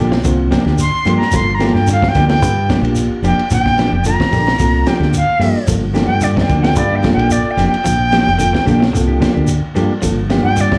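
A crunchy, gritty breakbeat kit with a high-tuned snare and dark cymbals drives this intense, hypnotic afrobeat excerpt at 110 BPM in G dorian over Gm7, joined by a round, up-front fingered bass, a grainy shekere, a twangy guitar at the edge of break-up playing very quiet arpeggios, dark clean guitar stabs with slapback echo and a reedy electric piano in the background with plate reverb, while from 0.8 s a pure, vibrato-laden silver flute takes an up-front solo, all heard as a live gig through the venue's PA with club reverb.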